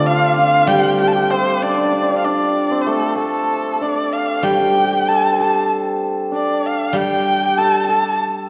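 A dark, expressive erhu with vibrato and sliding portamento carries a wistful, graceful melody at 96 BPM in a D yu mode, up front beside a shimmering hammered dulcimer second line, while a silvery guzheng plucked with fingerpicks rings softly beneath, all three entering together at the start of this brief cut from a longer Chinese chamber piece, bathed in the wet reverb of a concert hall.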